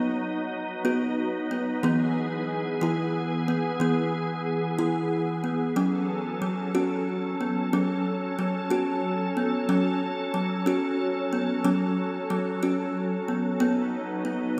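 A kalimba sits up front in this gentle, meditative world piece, its plucked arpeggios sounding woody and hollow with a bright, airy thumbnail attack that keeps each note short. Alongside it, a soft organ-like pad holds sustained chords, its pure, sine-like tone given a slow attack, a long release and an ensemble chorus that thickens the unison. The unhurried 6/8 pulse feels calm and straight, drifting from B to E before settling on F# minor at 5.8 seconds and returning to B near the close. A plate reverb soaks the whole mix, lending a dreamy, suspended atmosphere. Both parts play together throughout this short passage, which is cut from a longer piece.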